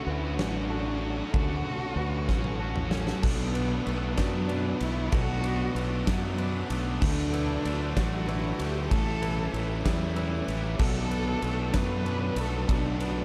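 Brooding yet cathartic, this post-rock passage moves at 63 BPM in a slow 6/8 in B minor, cut from a longer piece and set in a small room with a dark production. A rich, bowed cello carries the melody with expressive vibrato and portamento, sounding distant through tape echo, while an icy, crystalline glass pad holds very quiet sustained chords high above. Beneath them, a lo-fi guitar through a small old amp plays arpeggios with harmonic tremolo and tape echo, joined by a very quiet, twangy clean guitar also fingering arpeggios, as an overdriven guitar and a tight, bright distorted guitar drive a picked riff in the background. A round, fuzz-soaked fingered bass enters at 0.1 seconds up front, and a huge arena drum kit with punchy kick, bright cymbals and toms arrives at 0.4 seconds, building up to a drum fill that lands at 3.2 seconds. From there the harmony turns from Dmaj7 to Bm7, moving through Dadd9 and A7sus4 before settling back on Bm7.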